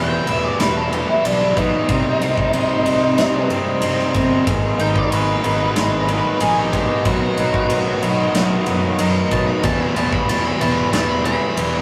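Angsty and brooding, this short cut from a longer alternative rock piece in the quiet-loud mould moves at a straight 4/4 pulse over a shifting chord path from E minor through C minor and G# minor to B, returning to E minor at 9.6 seconds. An octave-fuzz lead guitar carries a dark, distorted solo melody throughout, while a bright, thick fuzz guitar sits up front playing the riff. Beneath them, an electric guitar through a small old amp picks slightly broken-up arpeggios with tremolo in the background until 9.6 seconds, the moment a sludgy, overdriven guitar joins with its own low riff. A round, fuzzed fingered bass anchors the low end, and a huge arena drum kit enters at 0.3 seconds with punchy kick, medium-tuned snare and bright ride cymbal in a pumping hall sound. The whole take has the rough feel of a rehearsal-room recording, with small room ambience around it.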